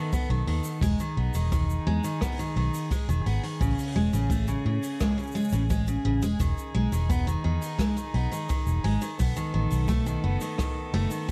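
Dry and close, with vinyl crackle sitting over the whole mix, this short folktronica passage has a pastoral, warm mood in a straight four. Up front, a bright, full-bodied steel-string acoustic guitar picks arpeggios through a B7, Emaj7, Amaj7, Emaj7 and B7 cycle, its tone roughened by vintage 12-bit sampler grit and trailed by delay. Beneath it, a dark, round, foam-muted electric bass is played with the fingers and sits prominently in the mix, entering at 0.3 seconds. A boomy acoustic kick played with brushes and a soft jazz brush kit of hi-hat, rim click and shaker give a natural studio-room pulse. Behind them, a small string quartet holds sustained chords, bowed sul tasto with an airy, soft attack and light vibrato, lending an intimate chamber warmth.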